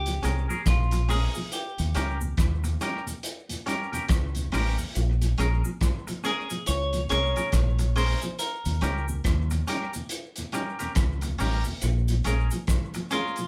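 A clean electric guitar melody and a round, dark fingered dub bass open this serious, hypnotic roots reggae excerpt, soon joined by a gritty, saturated breakbeat kit with a punchy kick, hi-hat and rim click, a twangy, bright picked guitar, a mellow tonewheel organ turning with chorus vibrato and slow rotary speaker, and a dry cabasa tucked in the background, all moving between Bbm7 and Eb7 in one live room with wet reverb until the bass drops out at 12.5 seconds.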